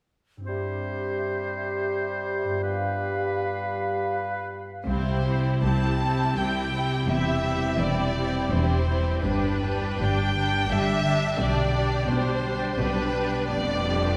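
Ringing harp arpeggios open this excerpt of a slow, tender romantic movement for symphony orchestra in 3/4 and C major, around 83 BPM with rubato. At 0.5 s they are joined by a clear oboe, mellow, hollow flutes, a distant, very quiet clarinet and a warm bassoon. At 4.9 s the strings take over: an up-front chamber violin section carries the lyrical melody with vibrato and portamento over darker, more distant violins, lush violas, a cello section in the background and a smooth, even double bass section, while the harp continues and a wet church reverb lends a spacious glow.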